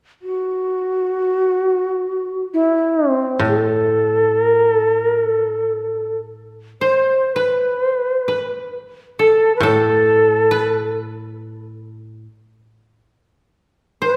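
A reedy, end-blown bamboo shakuhachi carries the melody in this austere, meditative Japanese traditional excerpt, entering at 0.2 s and sitting up front. Its tone is airy, with rolled-off highs, tongued notes and vibrato. The music unfolds in free time, drifting rather than following a steady pulse. At 3.4 s a koto joins as low, quiet accompaniment on a deep A, its fingerpicked sound dry and woody. A second koto line arrives at 6.8 s in a higher register, and both kotos are acoustic and warm. The recording sits in a church or concert hall, whose moderate reverb lends the phrases a lingering sense of space.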